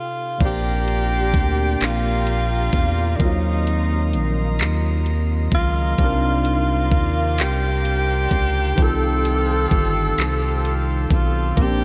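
A breathy, whispered tenor saxophone carries the melody up front, with vibrato and scooped notes drifting through a diffuse ambient delay over a slow, sensual six-eight R&B groove at 43 BPM in Bb major. A barky, lightly overdriven electric piano with phaser plays from the start, and at 0.4 seconds a reedy, nasal harmonium enters with sustained chords, along with a rubbery, dark square-wave bass and a smooth electronic drum kit of knocking kick, hi-hat, handclaps and crash cymbal. Cut from a longer piece, this tender passage moves through Bb69, Ebm6, Cm9 and F9 in a dreamy mix soaked in huge reverb.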